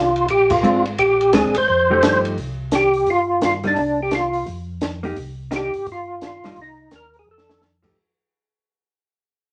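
Moderate reverb surrounds this swinging, greasy soul jazz organ trio excerpt at 172 BPM, where a fat, percussive tonewheel organ with key click and a slow rotary speaker sits up front on the melody over a round, mellow organ bass, a dry cocktail drum kit with dark cymbals, a high-tuned snare and punchy kick, and a picked, compressed hollow-body electric guitar in accompaniment, with a band accent at 0.5 seconds, a fade-out from 2.4 seconds and a drum fill at 7.3 seconds.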